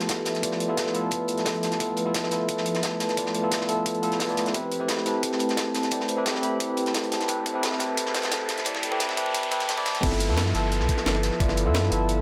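A clean, up-front tine electric piano with delay provides accompaniment in this melancholic, soulful liquid drum and bass excerpt at 175 BPM, joined by ringing soft-mallet vibraphone arpeggios, also with delay, and an airy, breathy pad with chorus and sidechain pumping, moving between G13 and Am9 chords. Beneath them, a compressed, pitched-up sampler-style breakbeat kit with a high-tuned snare layers with a crunchy, mid-forward acoustic kit with a rolled-off top and a knocking electronic kick, all inside a lush hall reverb. A filter sweep and a drum fill shape the build-up, a background riser and downlifter come in at 7.1 s, and at the drop at 10.0 s a deep, thick, saturated sub bass arrives.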